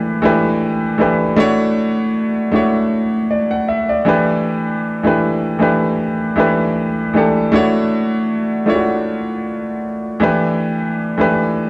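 A bright grand piano opens alone and carries this short soul cut from start to finish, sitting up front with a brilliant, slightly worn tone. The tempo is an unhurried 78 BPM in 4/4, with a gentle swing on the sixteenths that gives the lush, warm mood an easy sway. In D major and tuned a touch sharp to A4 = 445 Hz, the harmony rocks between A7sus4 over E and Dmaj9, spanning E3 to F#5 on the keyboard. A slapback echo trails the piano, while a moderate echo-chamber reverb of about 1.3 seconds wraps the dark production around it. The passage runs just under 12 seconds, lifted from a longer piece, and closes on the A7sus4 over E chord at 10.2 seconds.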